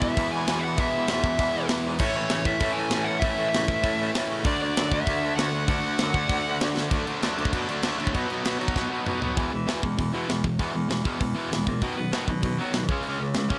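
Rebellious and upbeat, this punk rock excerpt charges along at 196 BPM in straight 4/4. A dark, overdriven lead guitar with delay carries the melody until 6.6 s, over riffs from a bright, picked semi-hollow electric guitar and a distorted guitar sitting in the background. A raspy, gritty baritone saxophone with vibrato plays the bass line from a distant, roomy spot, while an up-front acoustic metal drum kit with a high-tuned snare, tight kick and rolled-off top adds a fill at 8.8 s before the music settles into E major at 9.4 s under light reverb.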